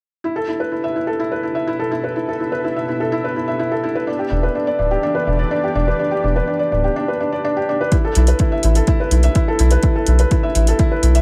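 Melancholic and intimate, this short cut from a longer piano and strings electronica piece moves at 125 BPM in straight 4/4 over B7sus4 and Em7 chords, led from the start by a soft, felt-muted upright piano riff with audible action noise, a boxy short sustain and digital delay. A lush, detuned sawtooth unison pad fades in beneath it with chorus and sidechain pumping, and a round, dark analog bass enters at 4.3 seconds, also pumping. At 7.9 seconds a deep, up-front overdriven electronic kick and metallic, overdriven electronic hi-hats arrive with a large-room character, all set in light reverb and digital ambience.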